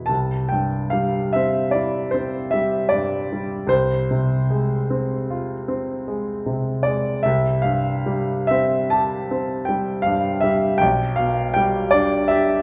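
Serene and tender, this brief excerpt from a longer romantic nocturne unfolds in a slow 9/8 with uneven beats and free rubato. A solo concert grand piano, up front and smooth with a deep bass and a vintage character, spans B1 to A5 as the harmony moves from C through Fm/C, C5 and G/B. A wet recital hall reverb surrounds the instrument with a gentle sense of space.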